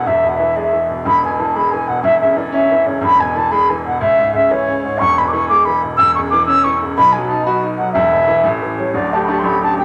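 Rollicking and cheerful, this Celtic folk piece in 6/8 at 122 BPM in E mixolydian sets a pure, woody flute with vibrato and a crisp attack up front over a bright concert grand piano whose brilliant tone, deep bass and long sustain carry the accompaniment through shifting E and C#m chords, all bathed in a large, wet studio reverb.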